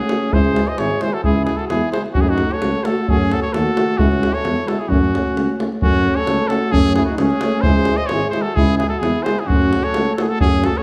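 A bright trumpet with light vibrato carries the melody over a mellow flugelhorn second line in this fiery, restless Balkan brass band piece, cut from a longer work and set at 131 BPM in 2/4 with a straight feel in F# dorian sharp4. A clear, punchy French horn and a dark, soft-attacked euphonium sit in the background as accompaniment, while a close-miked tuba with gentle vibrato holds the bass from 0.3 seconds and a tight, compressed, saturated davul drives the percussion. The band is heard from further back in a reverberant recital hall, with the harmony moving between C#m and F#m across a repeated section.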